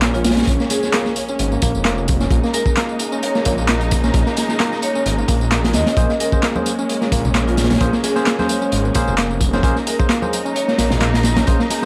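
Under a light reverb and a haze of vinyl crackle, this energetic, gritty breakbeat excerpt opens with a very quiet electronic impact as a crunchy, saturated breakbeat kit with a tight kick and medium-tuned snare sits up front beside a punchy, tape-toned analog drum machine of handclaps, hi-hat and tambourine. A thick, menacing detuned saw bass drives underneath, while a worn, slightly out-of-tune reed electric piano riff with tube saturation plays over lush bowed strings, which, pumping with sidechain and roughened by 12-bit sampler grit, hold a single minor ninth chord. A metallic vibraphone melody with fast motor vibrato and digital delay floats through a small speaker, joined at 6.0 seconds by barky tine electric piano stabs through a combo amp and soon after by ringing congas in the background.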